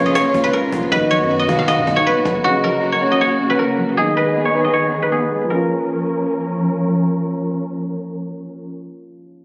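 Menacing and dark, this half-time trap fragment, cut from a longer hip hop piece, sets an ominous minor mood. A silvery, fingerpicked guzheng carries the melody up front, its ringing notes softened by a low-pass filter and trailed by delay. Behind it, a hollow synth lead with a square and triangle tone adds a soft second line, colored by chorus, phaser, vibrato and delay. A dark, mellow concert grand piano plays short-sustained accompaniment through a low-pass filter, while a lush bowed string section holds expressive sustained chords close and up front. A heavy, aggressive distorted 808-style bass and a woody cajon with faint snares sit beneath at the start, the cajon stopping at 2.3 s and the bass at 2.4 s, while the other parts carry on and the piano outlasts them all, playing until 9.4 s. The whole take sounds as if captured on a phone in the room, with club reverb, compression and a muffled low-pass edge.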